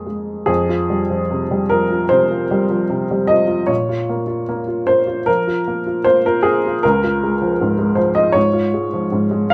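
A lone upright piano opens this melancholic, intimate neoclassical minimalist excerpt in F minor at 76 BPM, its woody, slightly detuned tone sitting up front with audible action noise under light reverb as it drifts in a rubato 4/4 through Fmadd9, Bbm and Db across a range from Db2 to F5 before the cut at 9.5 seconds.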